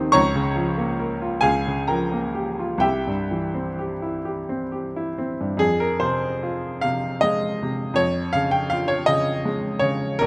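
Swaying in a rubato 6/8 at roughly 42-56 dotted-quarter beats per minute, this brief cut from a longer romantic nocturne in F minor carries a wistful, mournful mood. A clear baby grand piano plays alone throughout, its natural, up-front tone and short sustain spanning Eb1 to F6 as the harmony passes through C and arrives on F minor at 5.6 seconds. Close, detailed microphones catch the instrument inside a moderate recital hall reverb.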